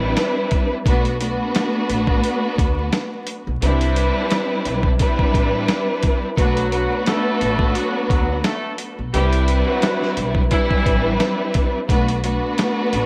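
A loping boom-bap groove at 87 BPM in 4/4, lightly swung on the 16ths, drives this dark, moody hip hop excerpt in B phrygian, with a gritty, compressed sampler-style kit entering at 0.2 seconds, pairing a thumpy kick with a medium-tuned snare and hi-hat up front, while a woody, gut-string upright bass is plucked low beneath it. A lush, bowed string section with expressive vibrato sits forward in the mix, given a cassette-tape haze and filtered at both ends as it moves between Cmaj7 and Bm7. From 6.4 to 11.2 seconds a mellow, soft-attack horn section adds vintage jazz-style stabs through filtering and digital delay, all set in studio reverb over a bed of vinyl crackle.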